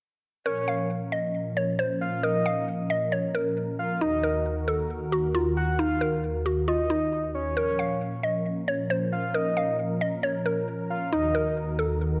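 Dark and melancholic, this half-time hip hop fragment in Bb minor moves at 135 BPM, with a woody, round, mallet-like synth pluck carrying the melody up front, treated with chorus and tape echo. A soft octave-layered lead traces a mellow second line above it with vibrato and the same chorus and echo, while a detuned sawtooth analog pad holds smooth sustained chords, all three entering at 0.5 s. The harmony sways between Bbm and Ebm inside a lush hall reverb, giving the whole passage a dusky, warm glow.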